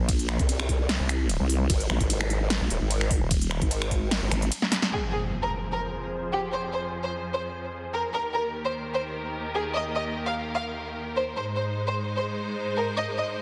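A nasal, resonant vowel-sweep wobble bass opens this aggressive, menacing heavy wobble dubstep fragment in F minor, joined almost at once by a knocking, overdriven electronic kick and a punchy big-room dance kit of snare, crisp hats, ride cymbal and finger snaps. A second, saturated formant-sweep wobble bass built from pulse and sine tones doubles the low end in the same deep register. The drop runs at 149 BPM in a half-time 4/4 feel, with both chorused basses sitting up front, and closes with a drum fill and a band accent. At 4.9 seconds an electronic impact hits, and a smooth, even violin section takes the melody with vibrato and tape echo. Beneath it, a rich, focused string section holds sustained chords through Fm, Eb and Ab, pumping against a sidechain while a filter sweeps across it until 13.4 seconds. A lush hall reverb surrounds the dense, heavily limited mix.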